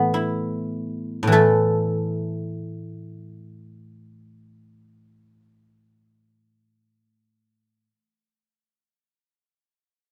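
Flowing and elegant, this short cut from a longer Chinese traditional piece features a solo guzheng played with fingerpicks, its acoustic tone silvery and ringing as it sits up front across a range from A2 to E5. The rubato playing slows over the opening 1.3 seconds before moving into a new section that runs to 6.3 seconds. Moderate studio reverb lends the instrument a gentle sense of space.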